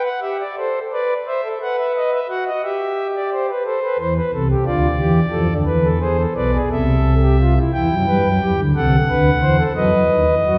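Serious and solemn, this short passage from a longer classical piece is a baroque-style three-part fugue in 6/8 with a straight, measured feel. A single pipe organ plays throughout on a principal stop, its smooth, romantic voicing spanning from B1 up to G5. The organ sits up front in the mix, while a wet concert hall reverb with a 2.0-second decay places the listener further back in the room and gives the sound a spacious halo. The harmony moves steadily through minor chords, diminished colour and dominant tension, from Em and Amadd9 through Dmadd9 and E7 before closing on B at 9.8 seconds. The result is a grave, contrapuntal texture.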